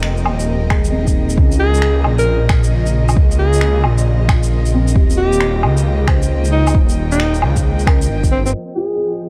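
Future garage with a nocturnal, melancholic air, this excerpt sets a felt-muted upright piano and dark, sul tasto chamber strings pumping under a menacing, detuned saw bass that swells up front, while overdriven finger snaps, shaker and woodblock and a deep kick entering at 0.7 seconds carry a swung groove, a clear alto saxophone with subtone, scooped notes and sampler grit takes the melody from 1.6 seconds over Fm9, Db6 and Eb9 chords, and vinyl crackle hangs in a small room.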